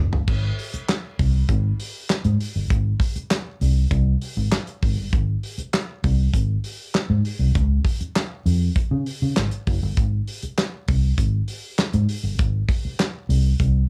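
Energetic and gritty, this short funk excerpt opens on a drum fill and pairs a vintage muted fingered electric bass, dark, amped and round with a foam-muted thump, against a damped 70s drum kit of tight kick, fat snare, toms, hi-hat, handclaps and dark crash cymbal, both sitting up front in a dry small room.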